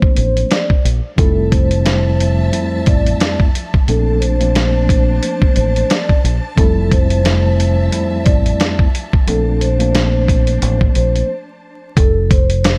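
Boom-bap hip-hop in F major at 89 BPM, this soulful, warm excerpt from a longer piece rides a swung sixteenth-note feel in 4/4 and moves between Bbmaj9 and Fmaj7 before landing on F at 12.0 seconds. A gritty, compressed sampler-style drum kit sits up front with a thumpy kick, medium-tuned snare and hi-hat, joined at 0.2 seconds by a deep, round, dark fingered electric bass that holds the low end firmly forward. A mellow tine electric piano, clean and heard through its built-in speakers, carries the chords until 11.3 seconds, when a brief break opens. Over it, a soft-mallet vibraphone sings the melody with a ringing, metallic tone, medium motor vibrato and a tape echo trailing each note. Faint in the background from 1.2 seconds, a lush symphonic string section adds bowed, expressive sustained chords with vibrato and portamento. The sound is dry and close, wrapped in a layer of vinyl crackle that gives the whole groove a dusty, crate-dug character.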